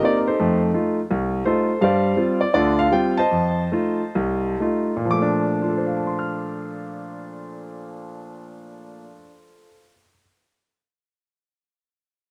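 Recorded outdoors with light reverb, this playful solo jazz fragment, cut from a longer piece, features a clear, up-front concert grand piano with deep bass, long sustain and a slapback echo, swinging in 4/4 in Bb major at 117-168 BPM, tuned to A4 = 437 Hz, easing its tempo from 1.8 to 5.1 seconds before settling onto a Bbmaj7 chord and playing on until 10.2 seconds.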